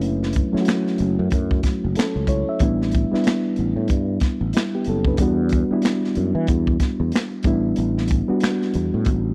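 A lightly swung sixteenth-note groove in 4/4 comes from a crunchy, gritty breakbeat kit of tight kick, snare, hi-hat and finger snaps, while a growly, punchy fretless bass sustains underneath in this introspective, soulful neo-soul excerpt cut from a longer piece. A reedy, mellow electric piano plays the accompaniment through its built-in speakers, moving through F#m7, A9sus4 and Em9 chords. The sound is dry and close, like a 1970s studio, with every part up front and the saturated drums rolled off at the top.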